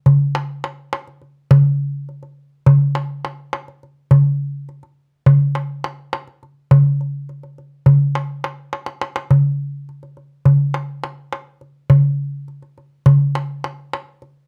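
A cassette-taped home recording with a moderate studio reverb carries this festive Turkish excerpt, a lone darbuka in 9/8 at 208 BPM eighths with a straight feel. The clay-shell drum with its natural skin sits close, dry and up front, played with soft hands for a warm tone. A drum fill at 8.7 seconds leads into a new section at 9.3 seconds, and the piece runs on until the darbuka stops at 14.3 seconds.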